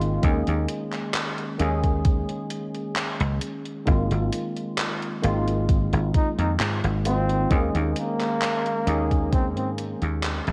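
Heard through a cassette haze with light reverb and a digital ambience, this nostalgic, faded vaporwave fragment is cut from a longer piece and moves at a slow 66 BPM in a straight 4/4, tuned a little flat to A4 = 436 Hz. A worn, barky tine electric piano sits up front, slightly out of tune and played through built-in speakers, its chords coloured by analog chorus, 12-bit sampler grit and tape echo as the harmony moves from Eb7sus4 to Ab69 and back. Underneath, a dry, foam-muted thumbed slap bass gives a punchy, direct low end, while an overdriven electronic kick adds a thumpy pulse and a gated 80s drum machine supplies handclaps and hi-hat, both sampler-style and re-recorded in a large room. At 6.1 seconds a breathy flugelhorn takes a whispered, intimate jazz solo with soft attacks, scooped notes and vibrato, its mellow tone roughened by the same sampler grit and tape echo. The fragment begins fading out at 8.7 seconds and ends at 10.5 seconds.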